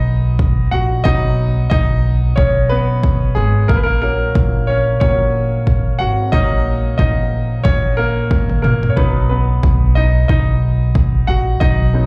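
A lightly swung 16th-note groove at 91 BPM in 4/4 drives this uplifting, anthemic piano-driven pop passage, cut from a longer piece and resting on a B chord in B major. A clear concert grand piano carries a solo across the whole passage: polished and up front, with deep bass, short sustain and a slapback echo. Beneath it an upright bass, played pizzicato, offers a woody, growly tone with steel-string bite. A punchy, layered electronic deep house kit of kick drum and toms enters at 0.4 seconds and breaks into a fill at 8.3 seconds. The sound is that of a live gig heard through the venue's PA, carrying a club reverb.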